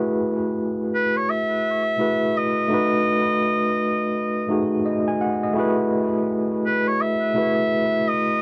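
An overdriven tine electric piano opens this smooth, longing reggae passage, its bright, barky tone pushed through a combo amp with a medium tremolo and tape echo, sitting up front as it plays the chords. At 0.9 seconds a solo oboe enters with the melody, its classical-style voice carrying a distant, roomy quality and its own touch of tape echo. The groove moves at 84 BPM in 4/4 with a 62% swing on the sixteenths, set in F# dorian and tuned to A4 = 435 Hz. The harmony moves from F#m11 to B7 at 2.7 seconds and returns to F#m11, while the oboe stays in a narrow range between B4 and E5. The dry, close sound of a 1970s-style studio, with light reverb, keeps the gritty keys and the reed equally present in this short cut from a longer piece.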